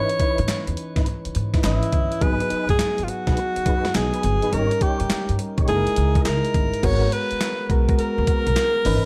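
Swung sixteenths drive this punchy, slick new jack swing excerpt, built on an up-front, sampler-style 12-bit drum machine with a thumpy kick, medium-tuned snare, hi-hat, handclaps and crash under gated reverb, plus a hollow, dry group handclap tucked behind it. A woody pizzicato upright bass on gut strings anchors the groove as soft, round electric-piano-like synth keys with chorus and a filter sweep comp through the chords, while a clean tonewheel organ with key click and fast rotary speaker adds background stabs. Out front, a breathy, intimate alto saxophone carries the melody with vibrato and scooped notes, before the harmony shifts into a new section at 6.8 seconds.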